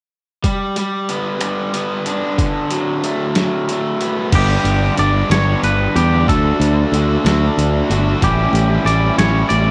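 A raw, overdriven garage guitar riff leads this wistful yet upbeat indie rock fragment in G lydian, moving in a slow 6/8 at 62 BPM, with a gritty, compressed sampler-style soul kit entering alongside it at 0.4 s, its thumpy kick, snare, hi-hat, finger snaps and crash all carrying a cassette-home-recording dustiness with little reverb. At 4.3 s a bright, up-front fingered electric bass and a very quiet, crunchy second guitar riff come in, and a twangy, clean, compressed electric guitar melody follows just after. The chords run G, D6, G, D and A5.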